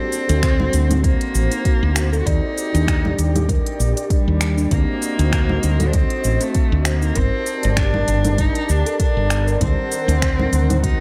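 A lightly swung 4/4 groove sets this hypnotic organic downtempo piece in motion. An overdriven electronic kit of cabasa, congas, finger snaps and smooth hi-hat, re-recorded in a large room, arrives at 0.1 seconds. A dark, round fretless electric bass enters at 0.3 seconds and sits up front as the loudest part, and a deep electronic kick follows at 0.4 seconds. Above it, a steel tongue drum struck with soft rubber mallets rings out pure, meditative arpeggios through a delay. An airy, breathy pad, with a detuned sawtooth edge, a noise layer and a moving notch, holds sustained chords under chorus and sidechain pumping. A rich bowed cello carries the melody with vibrato and portamento through tape echo, moving over chords from D7b13 to Ebmaj7, D7b9b13 and Gmadd9, all inside a digital ambience, in a passage cut from a longer piece.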